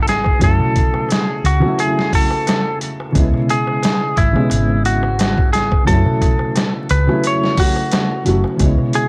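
Trip hop at 88 BPM with a lightly swung 16th feel, this short, cinematic and melancholic excerpt moves from F#m7 to C#m7 and back to F#m7. A bright, twangy lap steel guitar carries the slide melody up front, its clean tone trailed by tape echo. Beneath it, a felt-muted upright piano plays soft, intimate accompaniment with audible action noise, colored by tremolo and vintage 12-bit sampler grit. A round, dark hollow-body electric bass anchors the low end, and a pitched-down, compressed sampler-style drum kit sits forward with a thumpy kick, medium-tuned snare and hi-hat. A clay-shelled darbuka played with soft hands lingers in the background, while the whole recording carries a dry, gritty hardware character, digital ambience and vinyl crackle.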